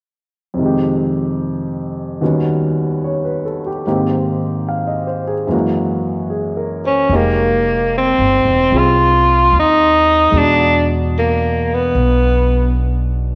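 Steeped in a lush echo-chamber reverb, this smoky, wistful swung jazz ballad excerpt opens with a clear, intimate grand piano whose action noise is audible as it lays down rich extended chords, before an up-front tenor saxophone with light vibrato and a vintage slapback echo takes the melody at 6.9 seconds and a woody, thumpy pizzicato upright bass enters at 7.1 seconds.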